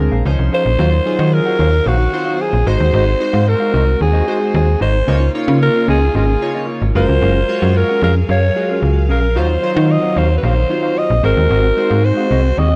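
Funk at 112 BPM in Eb dorian with a late-night, danceable mood, this clip from a longer piece sets a breathy, raspy alto saxophone melody up front over a snappy, metallic slap-like FM bass, a glossy chorused polysynth, a dark, clean electric guitar riff with subtle chorus, and lush studio strings that enter at 0.8 s with sustained chords, all moving through Ebm69, Ab7, Db69 and Gbmaj9 in a dry, close 1970s-style small-room sound.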